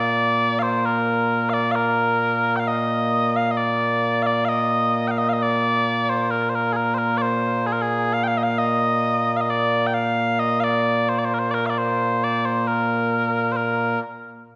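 Small bagpipes open the recording alone, playing a piece of Scottish traditional pipe music in a stately triple metre with a straight, even feel. Their tone is mellow and sweet, sustained in one continuous line with vibrato, and the instrument sits up front in the sound. The melody spans a generous range, from a low Bb2 up to G5. A moderate concert-hall reverb surrounds the pipes and gives them a spacious, resonant setting. The mood is ceremonial and proud, and the pipes carry the whole 14-second passage, which is cut from a longer piece.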